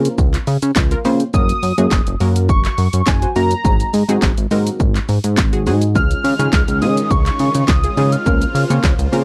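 A dry, close 1970s-style studio sound frames this upbeat, summery dance-pop fragment in Db major at 104 BPM, where punchy detuned sawtooth chord stabs with chorus and sidechain pumping ride over a glossy, mellow chorused synth bass and a tape-warm analog drum machine of kick, snare, handclaps, hi-hat and shaker sitting up front. At 1.3 seconds a velvety, full-bodied synth lead with vibrato and slapback echo enters high above, carrying the melody through changes from Gb to Ab7. At 6.0 seconds, on Dbadd9, a lush, bright supersaw pad fades in softly in the background with its own sidechain pumping.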